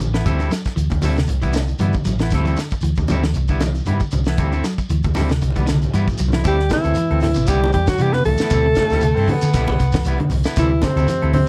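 Funky and joyful, this short afrobeat cut at 116 BPM in D mixolydian rides a tight funk kit with a high-tuned snare and a drum fill before 6.4 seconds, distant large-room congas and a grainy shekere, a round, up-front hollow-body bass, dark clean guitar arpeggios and twangy, slightly broken-up guitar stabs over alternating D9sus4 and Cmaj7 chords, until a breathy alto saxophone carries the melody from 6.5 seconds over a veiled, growling bucket-muted trombone, with a raspy, punchy baritone saxophone joining at 8.8 seconds, all in a dry, close 1970s-style studio sound.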